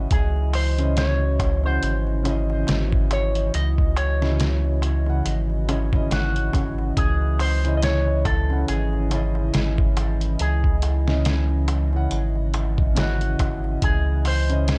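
A brooding, dark trip hop passage at 70 BPM in 4/4 with a 16th-note swing opens on a C#madd9 chord in C# harmonic minor. An electric guitar through an envelope filter carries the melody with a clean, picked tone trailed by dub echo, while a felt-muted upright piano plays soft, intimate accompaniment colored by tremolo and tape echo. Alongside them, a deep, detuned analog pad holds sustained chords with a slow attack, a nasal edge and a subtle chorus. A round sine sub bass sits up front, its low notes deep and mellow. At 0.1 seconds a sampler-style drum kit arrives, compressed and pitched down with a muffled, thumpy kick, a medium-tuned snare and hi-hat, while a clay-shell darbuka struck with hard hands stays in the background. The dry mix has little reverb, and the recording is cut from a longer piece, running to 14.8 seconds.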